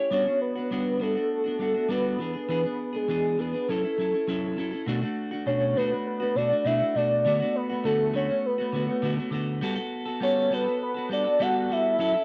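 A soft, octave-layered synth lead and a clean electric guitar sound together from the opening moment of this lonely, hazy indie pop excerpt, cut from a longer piece and moving at 101 BPM in a straight 4/4. The synth carries the melody between G#4 and F#5, its round, full tone blending triangle, sawtooth and sine shades over a sub octave, with a fast attack, sustained notes, vibrato and a darker edge, all colored by tremolo, analog chorus, analog delay and cassette tape. Beneath it, the picked guitar plays accompaniment from B2 to C#5, bright and twangy, with subtle chorus, a warbly pitch drift and the same tape coloring. Both parts sit up front in a moderate spring reverb, and the whole has the intimate feel of a home recording on cassette. The harmony drifts from Gmaj7 through E7 and F#m7, then at 4.9 seconds a new section opens on Bm7, passing through D6 before settling on Gmaj9 at 9.6 seconds.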